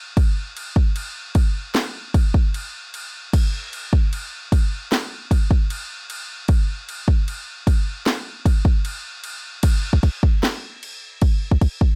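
Epic and dark, this short metal passage is carried entirely by an electronic, layered drum kit set up front, its punchy kick and cracking snare joined by crash cymbal in a half-time feel. Entering at 0.2 seconds in a dry, close room, the kick and snare drop out at 9.4 seconds as the music shifts into a brief new section that runs until the drums stop at 11.9 seconds.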